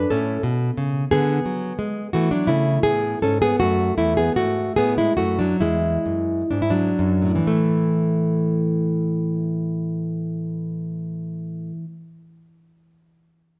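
Bathed in a lush recital-hall reverb, this short excerpt from a longer classical piece presents a solo nylon-string guitar, warm, fingerpicked and up front, playing a flowing, serene baroque-style dance with rubato phrasing that slows through the first 7.5 seconds before moving into a new section.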